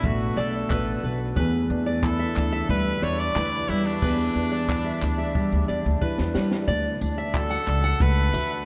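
A straight 4/4 groove drives this heartfelt, carefree acoustic pop excerpt, where a brilliant, distant trumpet sings the melody with light vibrato over a full-bodied, up-front fingerpicked steel-string guitar, deep classical nylon-string arpeggios, a woody, growly pizzicato upright bass and a dark, smooth cocktail kit of handclaps, punchy kick, high-tuned snare and tambourine that plays a fill from 5.4 to 6.7 s as the harmony moves from Bm7 and Em7 to D, all set in a vast, echoing cathedral space.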